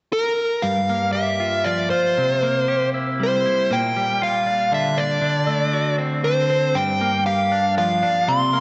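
Melancholic and cathartic, this short rock excerpt moves at 118 BPM in 3/4 with a straight feel in G dorian, tuned slightly low to A4 = 439 Hz. A dark, smooth, overdriven lead guitar carries the melody up front from 0.1 seconds, treated with digital delay, while a bright, twangy twelve-string electric guitar enters at 0.6 seconds with clean, compressed arpeggios bathed in spring reverb and delay. The chords cycle from Gm7 through C7, Gm7/Bb and D7 back to Gm7, all set in a wet scoring-stage reverb with a mellow top end.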